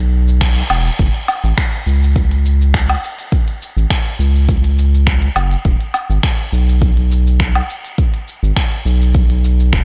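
The recording sounds dry and blown-out, with a heavy overdrive across the mix. This short slice of an organic downtempo piece moves at 103 BPM in 4/4 with a light 16th-note swing, tuned to A4 = 438 Hz. Its mood is meditative and mystical. A round analog bass opens at 0.0 seconds, deep, dark and up front, with a fast attack, sustained sine-like tone and sidechain pumping, ranging from E1 to C#2. An organic electronic drum kit enters at 0.3 seconds with cabasa, finger snaps, smooth hi-hat and woodblock, its snare softly clipped, and an electronic kick drum with a deep, tape-warm sound joins at 0.4 seconds, where the band hits an accent; both drum parts carry the sound of being re-recorded in a large room.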